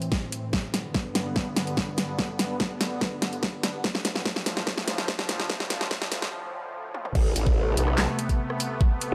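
Driving half-time 4/4 at 145 BPM in A minor, this menacing, chaotic slice of heavy wobble dubstep opens on a build-up, where a lush, detuned supersaw pad holds sustained chords from Am through G to Dm under a filter sweep and sidechain pumping. A layered dubstep kit with a huge snare, metallic hats, handclaps, toms and crash sits up front, joined by an overdriven, knocking electronic kick, with drum fills running through the build before a break at 6.3 seconds. At 7.2 seconds the drop lands on Amadd9 as a growling, saturated wobble bass with a formant filter and chorus bursts in, bright and aggressive, over a lightly reverberant, high-passed mix.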